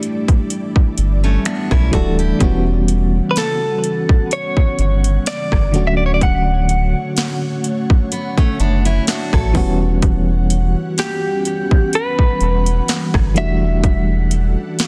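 A late-night, moody contemporary R&B excerpt opens with a mellow FM electric piano shimmering with tremolo, an ethereal, detuned pad washed in chorus and reverb, and an up-front trap kit of hard-clipped kick, sharp snare, metallic hats, snaps and rim clicks, the snare softly clipped. A deep sine sub bass arrives at 1.0 seconds, joined by woody, old-stringed acoustic guitar arpeggios through digital delay that play until 9.8 seconds. From 3.3 seconds a clean, compressed, direct-recorded electric guitar carries the melody with its own delay over a dense, heavily limited modern master.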